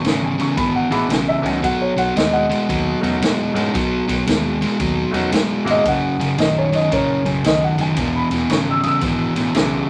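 An overdriven semi-hollow guitar riff sits up front in this rollicking, laid-back electric blues shuffle in B major at 114 BPM, while a woody upright piano takes the solo line over a dark, foam-muted fingered bass, a swinging big-band kit with dark cymbals and a punchy kick, and a bright concert grand adding accompaniment from 0.9 to 5.8 seconds and again at 9.5 seconds, all in a moderate studio reverb across the chords E, B7, F# and E7.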